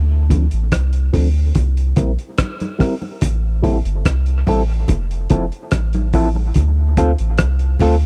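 A round, mellow sub bass opens this hypnotic, spacious dub reggae excerpt, joined at 0.3 seconds by muffled, cloth-damped drums with a tight kick, hi-hat and rim clicks, congas ringing softly in the background under dub echo, and a slightly broken-up electric guitar carrying subtle chorus, a low-pass filter and echo. A filter sweep runs across the guitar through the Dm7, C7, Am7 and Fmaj7 changes, while the close, dry small-room sound keeps the gritty drums and deep bass up front.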